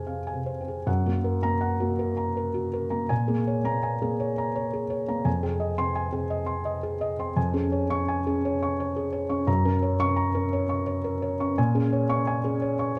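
A moderate recital-hall reverb surrounds an up-front, felt-muted upright piano, dark and mellow with a thick felt tone, playing solo in this peaceful, intimate neoclassical minimalist piece, cut from a longer work, that drifts in a rubato 3/4 at 74-88 BPM through Fm, Gb, Bbm7 and Db/F harmonies across 13.0 seconds.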